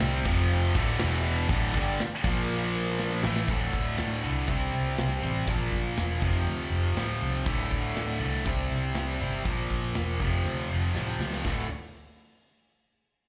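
A heavy, driving hard rock riff in D minor at 120 BPM opens with a very quiet, double-tracked high-gain guitar that drops out at 3.5 seconds, while a pair of bright, tightly picked distorted guitars with slapback echo, a dark, round, foam-muted electric bass up front and a big acoustic rock kit with a punchy kick and medium-tuned snare push on through power chords built on D, C, Bb and F, capped by a drum fill at 10.9 seconds before the band breaks off around 11.7 seconds, all heard as a live club gig through the venue's PA with reverb.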